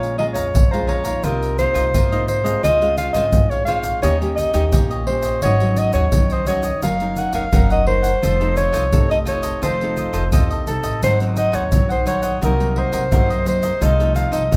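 A breathy, dark soprano saxophone carries the melody up front in a whispered, intimate jazz style, its subtone and light vibrato giving this lively, nostalgic samba and choro excerpt a soft-edged voice. Beneath it, a crisp, picked cavaquinho and a fingerpicked nylon-string guitar with old strings and a classical touch move through minor-seventh and suspended chords, while a woody, thumpy pizzicato upright bass on gut strings holds the bottom. Close, dry egg shaker, pandeiro and a deep surdo played with soft hands sit up front, all within a moderate, large studio reverb.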